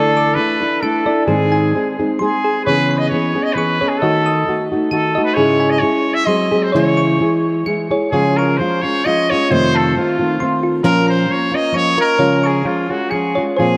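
Soaked in a long plate reverb, this dreamy mariachi-flavoured Mexican folk fragment moves at 132 BPM in a loose, rubato 3/4 with a gentle swing, sounding festive and romantic as it shifts from C# minor to Db major at 8.1 s. A clear, distant trumpet with light vibrato carries the classical-style solo melody through a tape echo, while a dark, full-bodied nylon-string guitar, thumb-plucked and up front, holds the accompaniment. A tine-like synth pluck, round and mellow with a noise layer and chorus, spins quiet arpeggios that reach up into a high register.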